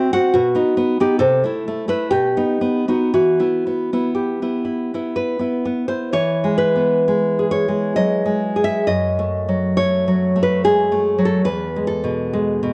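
In a rubato 3/4 pulse drifting between 56 and 72 BPM, this romantic piece for solo classical guitar moves with an intimate, passionate feel, opening in E minor before brightening into E major at 6.2 s. The bright, fingerpicked nylon-string guitar sits up front across its range from E2 to F#5, with chords such as Am/C, B and F#m69 colouring the phrases. Light reverb surrounds it, and the sound carries the worn, warbling pitch drift of old cassette tape in this fragment cut from a longer piece.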